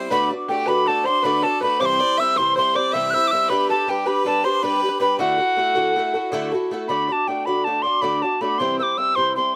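A shimmering, boxy twelve-string guitar fingerpicks an octave-doubled accompaniment up front, alongside a clear, earthy bowed fiddle and a very quiet, plunky open-back banjo on a second line, as this bright, rollicking Celtic slip jig in 9/8 gets going; a pure, hollow wooden whistle with tongued chiff and vibrato carries the melody forward, while whistle and guitar share a slapback echo, and the fiddle and banjo drop out at 6.5 seconds in this dry outdoor recording cut from a longer piece.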